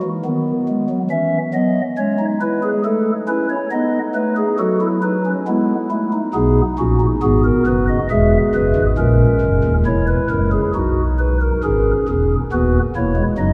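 A soft, hollow pipe organ on stopped flute stops, its chiff up front, carries an elegant, lively baroque-style four-part fugue in E major at 68 BPM in 3/4, moving from E through A, B7 and F#7 before settling back on E at 11.6 seconds, all bathed in a lingering cathedral reverb in this brief excerpt cut from a longer piece.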